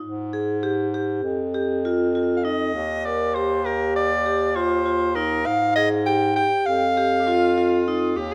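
A straight, uneven 9/8 pulse drives this restless, shimmering piece of contemporary chamber music, where a clear, up-front bass clarinet holds the low line from the start, a vibraphone rings out metallic, airy arpeggios, a breathy soprano saxophone with light vibrato carries a jazz-tinged melody from 2.4 s, and a rich, biting viola adds a bowed second line at 7.2 s, in a moderate recital hall reverb.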